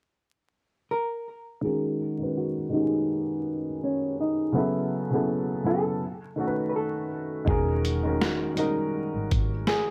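Cosy and dreamy, this lo-fi hip hop piece, cut from a longer track, drifts along in 4/4 with a gentle swing on the sixteenths, wrapped in vinyl crackle and a moderate studio reverb. A clean, fingered hollow-body electric jazz guitar carries the melody from 0.9 seconds, its low-passed tone soft and shadowy. At 1.6 seconds an upright piano joins with mellow, woody accompaniment, up front and intimate, slightly detuned, with long sustain and audible action noise, while a filter sweep runs through the rest of the passage. The harmony moves from Bmaj7 through F#m7 and B7 to Emaj9. At 7.5 seconds a single bowed double bass enters, low and expressive with vibrato, portamento, a soft attack and a smooth top, alongside a compressed, pitched-down, muffled sampler-style drum kit whose thumpy kick, medium-tuned snare and hi-hat sit up front with the character of a large room.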